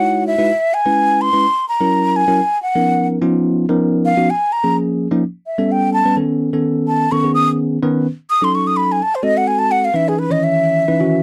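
A breathy, mellow silver concert flute with unsteady vibrato, a crisp attack and a slapback echo solos up front throughout this slick, soaring jazz fragment in a straight 4/4, cut from a longer piece, over a bell-like, bright tine electric piano that comps cleanly and directly through rich chords such as Emaj9, Bmaj9#11 and G#7b9, all captured as a dry, close 1970s-style studio recording with light reverb.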